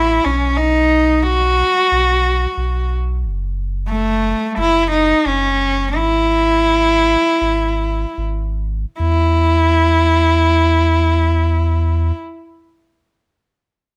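A close, boxy solo cello plays an intimate, airy sul tasto melody with light vibrato over a deep, smooth sine sub bass in this anthemic, warm indie folk passage in E major and 4/4, moving at 73-91 BPM through B, F#m and E/G# chords and slowing from 3.2 to 9.0 seconds before the harmony falls away, all in a lightly reverberant room and cut from a longer piece.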